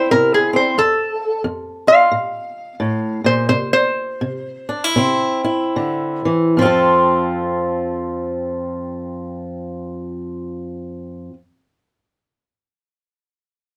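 Swung 4/4 eighths carry this gritty, swaggering fragment of acoustic country blues, where a nasal, metallic lap resonator guitar played with a steel bar and fingerpicks sings the slide melody up front until 5.2 seconds while the pace slows from 0.8 seconds, over a boxy, fresh-stringed fingerpicked acoustic guitar whose swing-style accompaniment runs on to 11.4 seconds in a close, detailed, lightly reverberant sound.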